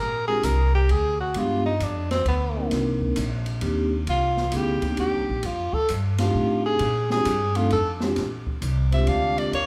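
A clear tenor saxophone with light vibrato and scooped notes opens this swinging small-group jazz passage in 3/4 at 132 BPM, soloing over woody, growly pizzicato upright bass, mellow vibraphone ringing under soft mallets and a slow motor vibrato, and an open drum kit with dark cymbals and a boomy kick. In Bb mixolydian, the harmony moves through Bb9, G7b9, Cm7 and F13 with a swing feel, and the players sit in a moderate recital-hall reverb. The tenor solo closes at 8.2 s, and at 8.9 s a bright, punchy soprano saxophone steps up front with a forceful melody before the passage breaks off.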